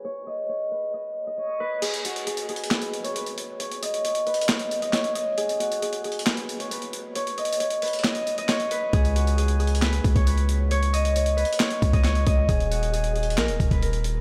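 A bright, ringing fingerpicked Celtic harp carries the melody through a low-pass filter and diffuse ambient delay in this dark, menacing half-time trap excerpt at 135 BPM, joined at 1.8 seconds by a gritty, tape-warm breakbeat-style kit with its kick held back until a punchy, heavy 808 bass arrives at 8.9 seconds, all soaked in a dreamy, huge reverb.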